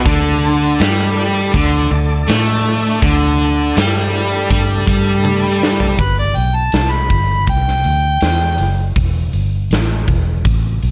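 A straight 4/4 groove drives this brooding, smoky mix of blues rock and southern rock, with a huge arena drum kit and a dark, round, foam-muted fingered bass holding the bottom, and a drum fill at 5.2 seconds. Up front, a bright, double-tracked fuzz guitar riff sits over sustained chords from a gritty, overdriven tonewheel organ with key click and a slow rotary speaker, both parts stopping at 6.0 seconds. From there a mellow harmonica takes the melody with light vibrato, overdrive and slapback echo until 8.9 seconds, all set in light reverb.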